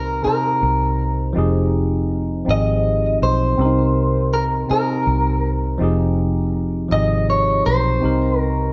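A slow six-eight R&B excerpt in F minor at 54 BPM opens with all three parts together: a picked electric guitar at the edge of break-up carries the yearning melody between Bb4 and Eb5, its compressed tone bathed in spring reverb, over a worn, slightly out-of-tune tine electric piano colored by phaser and plate reverb. Underneath, a foam-muted vintage fingered bass sits dark, round and punchy in the low register from F1 to C2. The harmony rocks between Cm7 and Fm9 across the 8.7 seconds, giving the whole a late-night mood in a lightly reverberant room.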